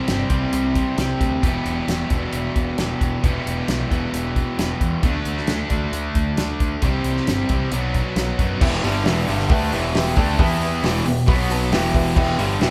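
Classic rock with a brooding, driving feel, as two bright, overdriven picked guitars, one from a cranked stack and one crunchy, lay down riffs over a growling overdriven bass and a dry, up-front 70s drum kit with a fat snare and tight kick, all sharing a large studio room, until at 8.6 seconds a raw, double-tracked garage guitar joins in the background alongside a dark, woody, slightly detuned upright piano.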